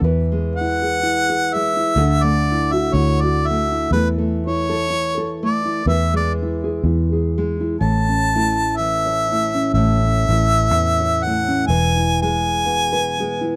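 Peaceful and hopeful, this short cut from a longer acoustic folk piece moves at a slow, swung 62 BPM in A major, with a warm harmonica carrying the melody up front with light vibrato and a solo turn through the first 7.8 seconds, a full-bodied, thumb-plucked nylon-string guitar accompanying with audible finger squeak, and a dark, round, foam-muted electric bass underneath, all captured in a dry, close 1970s-style studio sound.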